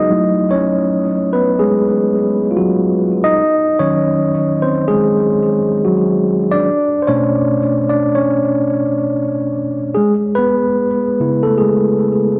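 A lazily swung 16th-note feel in 4/4 hip hop shapes this hazy, reflective fragment from a longer piece, carried from 0.0 to 12.4 seconds by a solo, mellow, clean tine electric piano played up front through its built-in speakers. Its low-pass filter and tape echo add softness, and it moves through F#m11, D#m7 and Bm9 before settling on C#m7 at 10.0 seconds, all set in moderate spring reverb within an echo-heavy cassette-tape mix.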